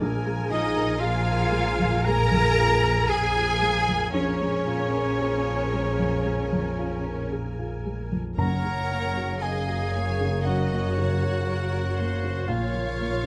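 Cinematic, emotional film score for orchestra, cut from a longer piece, with a hopeful, uplifting mood and a freely breathing rubato feel. A dark, mellow baby grand piano, its action noise audible, and a smooth viola section open the passage as accompaniment, while a French horn section holds sustained chords and an up-front double bass section anchors the low end. From 0.5 seconds a smooth, even violin section, sitting distant in the background, carries the melody, with a lush cello section adding bass support. A second line is shared by a hollow, pure concert flute, a classical-style solo oboe and a focused second violin section. At 8.4 seconds the harmony turns from Bbm7 to Gb, and timpani struck with hard mallets on calf heads sound briefly, articulate and dry, before the music settles back on Bbm. Light reverb and close, detailed microphones keep the ensemble intimate yet full.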